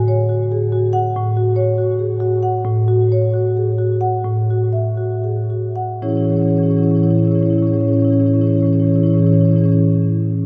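Contemporary classical music for solo marimba, played with medium mallets in a playful, flowing 7/8 that slows between 1.9 and 6.0 seconds before a new section begins at 6.0 seconds, the harmony moving from A6 to F#m7/A and then Amaj7. The close-miked marimba sounds full and warm, spanning a range from A2 to F#5 and sitting up front, while a vast, echoing cathedral space surrounds it with a long, wet tail in this short excerpt from a longer piece.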